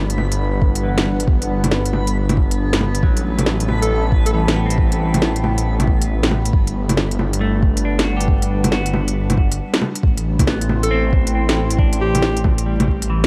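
A rainy, wistful future garage passage opens on a menacing, detuned saw bass and a dreamy reversed texture over vinyl crackle, as a warbling, nostalgic tape-like pad, a swung organic electronic kit of bongos, smooth hats and woody snare, a soft overdriven kick and a dark, clean semi-hollow guitar with spring reverb and tape echo settle in, the pad, bass and guitar pumping to the sidechain, while a subtone alto saxophone drifts in briefly at 3.8 seconds and returns after a short break at 10.8 seconds.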